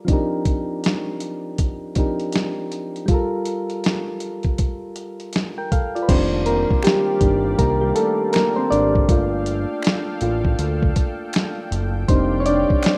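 Over a lazily swung 4/4 groove, a gritty, thumpy sampler-style drum kit with a fat snare, hi-hat and crash sits up front beneath soft, round electric-piano-like synth keys that pass through a filter sweep and cassette-tape haze, giving this nostalgic lo-fi hip hop fragment its dusty feel. At 6.1 seconds the keys take a solo as a lush, detuned unison pad and a thick analog bass join, with very quiet finger snaps from 6.8 seconds. The harmony drifts between F13sus4 and Gm9 in a rough home-demo mix with light reverb.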